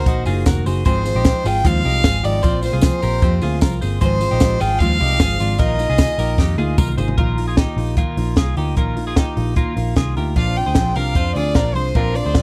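A soft-attack, sul tasto violin opens this bright, nostalgic stretch of jangly indie pop alongside fingerpicked steel-string acoustic guitar, twelve-string electric guitar arpeggios and a foam-muted, round electric bass, with a compact cocktail drum kit joining at 0.1 seconds. The tempo is a straight 152 BPM in 4/4, in Bb mixolydian, with chords moving from Ebm through Ab6 and Bbsus2 before settling on Bbsus4 and finally Bbadd9. The single bowed violin carries the melody with a pure, floating tone touched by slapback echo, an effect shared by the clean, compressed twelve-string; the violin drops out after 6.8 seconds and returns at 10.4 seconds. Beneath it the dreadnought acoustic adds full-bodied fingerpicking and the dark, amped bass adds punch, while the drums' punchy kick and high-tuned snare sit up front. A jingly tambourine lingers in the background through the opening section, a drum fill leads into the middle passage, and the whole sound is dry and close, in a 1970s studio style with little reverb.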